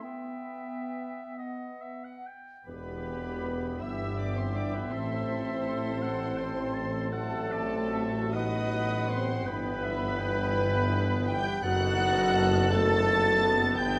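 Heard through a moderate scoring-stage reverb, this melancholic, solemn slow romantic orchestral movement in E minor sways in a rubato 6/8 at 43-57 BPM: clarinet, oboe and a background French horn section open with a brief, pure-toned flute line, then at 2.7 s muted, veiled violins take the melody over a second violin line, a very quiet viola accompaniment, faint trombone chords, distant trumpet stabs and a bass of clear tuba with dark cellos and double basses, with the harmony moving through Em, Am and F#dim/A to B7.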